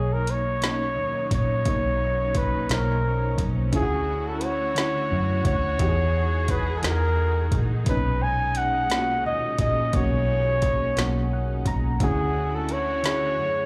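A mellow, close-miked flugelhorn carries the tender melody in this intimate slow six-eight R&B excerpt in B major at 58 BPM, over a warbling FM electric piano with tremolo and slapback echo that adds a short fill at 11.0 seconds, soft bowed strings with sul tasto vibrato, a round, foam-muted fingered bass, and a smooth drum kit with a woody snare and metallic hats, all heard as a live gig through a club PA as the chords move from Bmaj9 through Dmaj9 and Emaj9.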